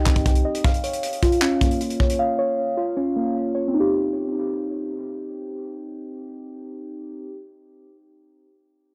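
Muted, felt-like synth keys play intimate, softly decaying arpeggios coloured by chorus, phaser and tape echo through this dark, melancholic half-time trap fragment, while a tight funk drum kit with a punchy kick, hi-hat and handclaps sits up front only from 0.1 to 2.2 seconds in a dry, gritty small-room sound.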